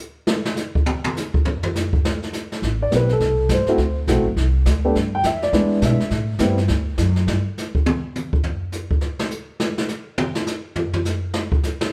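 This relaxed, swinging jazz piano trio piece, cut from a longer performance, opens with the brush drum kit alone at 0.3 seconds, playing brushed snare, hi-hat, kick and toms at a brisk 206 BPM in 4/4 with a swung eighth-note feel. The kit has a distant, roomy character, with a medium-tuned snare and a boomy kick. At 2.6 seconds the pizzicato upright bass enters with a woody, thumpy gut-string tone, and the dark upright piano joins shortly after, carrying the melody in a mellow voice with long sustain bathed in plate reverb. Together they move through a harmony built around Am7, D7, D minor and E7 before settling back on Am7 and D, in a tuning set slightly below standard at A4 = 436 Hz. The drums then carry on alone from 7.3 seconds to the end at 11.9 seconds. The whole trio sits in a large studio space with moderate reverb, heard from further back in the room.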